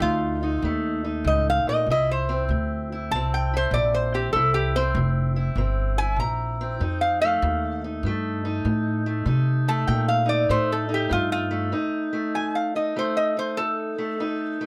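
Opening on a nasal, metallic resonator guitar that takes a slide solo with a steel bar and fingerpicks, over a dark, boxy fingerpicked parlour acoustic guitar and a woody, bright pizzicato upright bass, this soulful, gritty acoustic country blues excerpt swings at 97 BPM in F mixolydian through F7 and C7 chords in a moderate studio reverb, with the bass dropping out at 11.7 seconds while the two guitars carry on to 14.7 seconds.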